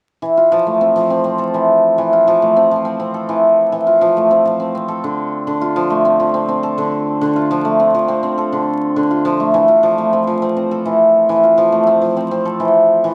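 Hopeful and delicate, this short folktronica passage, cut from a longer piece, features a lone hammered dulcimer sitting up front, its shimmering, ringing acoustic tone moving between Fmaj7 and Dm7. A moderate small-room reverb gives the strings a gentle halo, while a bed of vinyl crackle adds a worn, homely texture. At 9.5 seconds the music shifts into a new section, returning to Fmaj7 before the clip ends at 13.1 seconds.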